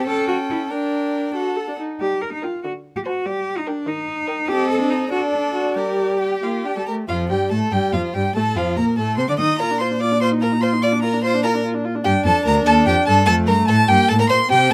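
A string quartet opens all at once in a restless, dramatic minor mood, a quick classical-period movement in a lilting six-eight whose pulse bends freely with rubato. The first violin carries the melody high above the group with a rich tone and vibrato. The second violin adds a clear, close-miked second line beneath it, and the viola fills in the accompaniment with a warm tone and light vibrato. The cello anchors the bass with a clear, forward sound, ranging from low notes up into the tenor register. At 7.1 seconds the harmony turns toward a major key for a second section, though the urgency carries through to a return to minor near the close. The close, detailed recording is nearly dry, so each bowed line comes through smooth and even, as if the listener were sitting among the players in this short cut from a longer piece.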